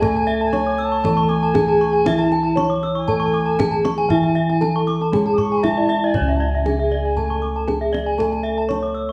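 A large, wet studio reverb surrounds this hypnotic, shimmering Balinese gamelan passage, captured as a band playing live in one room and cut from a longer piece. A bronze metallophone carries the melody with a slapback echo. Beneath it, a lower metallophone supplies accompaniment, one of these two struck with soft padded disc mallets for a dark, smooth tone, the other with a wooden mallet that sounds close, dry and full. Two further metallophones spin bright, airy arpeggios with horn mallets, their paired tuning producing the beating shimmer typical of the style. A crisp, reedy bansuri with a straight tone weaves a second line high above, while mellow bossed gongs played with padded beaters hold down the bass with a round, beating resonance. Deep kendang hand drumming sits in the background and stops at 8.8 seconds, just before the rest of the ensemble ends at 9.1 seconds.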